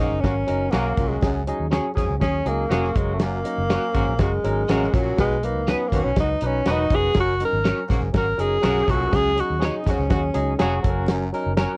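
The sound carries the character of cassette tape with a light reverb, and this short cut from a longer piece is uptempo 1960s-style soul in a straight, danceable four. A breathy tenor saxophone carries the melody up front throughout, its subtoned, punchy tone touched with light vibrato and scooped notes. A clear, vintage-sounding horn section plays a second line beneath it, while a growling, raspy baritone saxophone holds a low riff in the background. A barky tine electric piano, bright and clean through a combo amp, supplies the accompaniment, joined by a twangy electric guitar riff at the edge of break-up and, from 0.7 seconds, a second, brighter guitar adding picked stabs bathed in lush chorus. Underneath, a round, foam-muted fingered electric bass and a dry, dark soul drum kit with a punchy kick and medium-tuned snare keep the groove moving as the chords circle between F#, C#sus4 and B.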